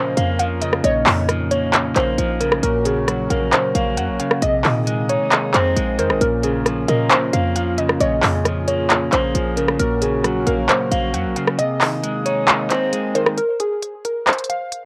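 Hip hop trap with a melancholic, hard-hitting half-time feel, led by a warbly, dusty pluck melody soaked in chorus and tape echo over a slightly broken-up electric guitar, a reedy, breathing harmonium holding sustained chords, a punchy, tight 808-style bass, an up-front trap kit of crisp hats, handclaps and rim clicks, and a quieter second pluck line with phaser sitting in the background, everything but the bass steeped in cassette lo-fi character in a small booth until the kick drops out at 11.6 seconds and the excerpt breaks down at 13.4 seconds to the lead pluck and drums.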